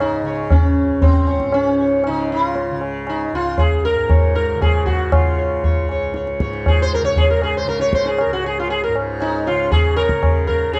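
Radiant and serene, this Hindustani classical passage in Db raga bilaval moves at 117 BPM in a straight 3/4, and it is cut from a longer piece. The sitar carries the melody between C4 and Db5, its plectrum-plucked tone round and buzzing, with sympathetic strings adding a shimmer; it carries a plate reverb and sits up front in the mix. Beneath it, the tanpura holds a softly plucked drone spanning Db2 to Db3, bright, buzzing and shimmering at a lower level. The tabla sits at the same level as the sitar, high-tuned and ringing, heard close and dry. All three parts play together throughout the 10.8 seconds, framed by a light reverb and a dark, warm production.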